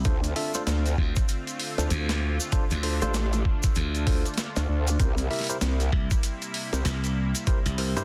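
A chorused, smooth sawtooth pad with sidechain pumping opens this funky, playful glitch hop excerpt at 97 BPM in D minor, joined at once by a glassy, punchy slap bass, a gritty overdriven boom bap kit of hi-hat and snare, and a grainy tube shaker, all swinging on the 16ths. From 0.1 seconds a growling, saturated bass with chorus and a thumpy, overdriven electronic kick sit up front, while a bright tine electric piano adds clean stabs through dub echo and sidechain pumping over a move from Dm7 to C7 at 5.0 seconds. The sound is dry, dense and heavily limited.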